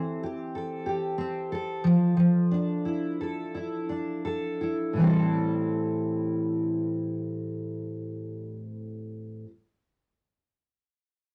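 A home cassette recording, set in a wet studio reverb with a short tail, frames this tender, reflective pop fragment cut from a longer piece. Its only voice is a fingerpicked steel-string jumbo acoustic guitar, double-tracked and carrying the cassette tape's character, sitting up front with a full-bodied tone. In 4/4 with a light swing on the sixteenths, the guitar plays accompaniment across a range from A2 to A4, moving from Am7/E to Dmadd9/F at 1.8 seconds. The opening passage slows down over its first five seconds before a second passage begins at 5.0 seconds on Am7. The guitar rings on until 9.5 seconds, leaving a quiet, tender impression.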